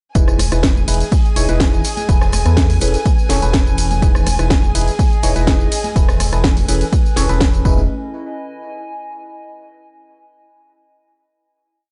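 A dry, gritty small-room recording of uplifting, euphoric piano house, where a punchy four-on-the-floor electronic kick and an overdriven house drum kit with a cracking snare sit over a very quiet compact cocktail kit and background tambourine and congas, while a hollow organ-like FM bass, a biting FM electric piano riff with phaser and tape echo, and a lush symphonic string section holding a high note all pump under sidechain, and a warbling, nostalgic tape-like pad rings on alone for a final note from 7.9 to 9.8 seconds.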